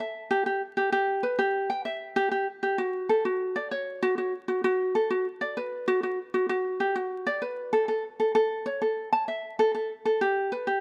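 Folktronica at 97 BPM in a straight 4/4, this short cut from a longer piece carries a hopeful, pastoral mood. A lone acoustic ukulele carries the whole passage from 0.0 to 10.8 seconds, fingerpicked and sitting up front in the mix. Its tone is light and warm, ranging from F#4 up to A5, with a delay effect trailing its notes. The room around it holds a light reverb, and a layer of vinyl crackle lends the recording a worn, homespun texture. The result feels intimate and gently optimistic, like an open-air sketch.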